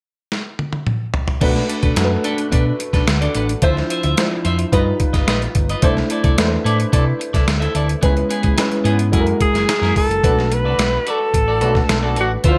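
Urban and nocturnal, this polished 1980s jazz-funk pop excerpt at 109 BPM in B phrygian opens with a drum fill from a gritty, pitched-down boom bap sampler-style kit with a thumpy kick and gated reverb, joined at 1.4 seconds by round fingered electric bass, a boxy dark grand piano with analog chorus and a clean picked electric guitar riff with subtle chorus, before a breathy alto saxophone with subtone, scooped notes and digital delay takes an up-front jazz solo at 9.4 seconds over chords moving from Bm7 through G7alt and F#9, all in a bright digital 1980s-style mix with moderate plate reverb.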